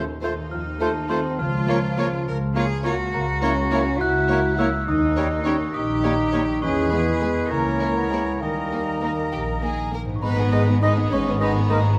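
Quirky and sneaky, this playful, whimsical cinematic cue moves in 6/8 at 68 BPM, starting in Bb minor and shifting to G# minor at 3.1 s, as a background violin section carries the melody with a mellow, bell-like glockenspiel played with rubber mallets, while a second violin section, an airy flute section, a close-miked oboe and a warm, soft-attacked clarinet weave second lines over a bowed viola section, a distant, roomy bassoon, very quiet ringing harp arpeggios and sustained French horn chords, with a clear cello section and an up-front double bass section with portamento holding the bass, set in a moderate scoring-stage reverb.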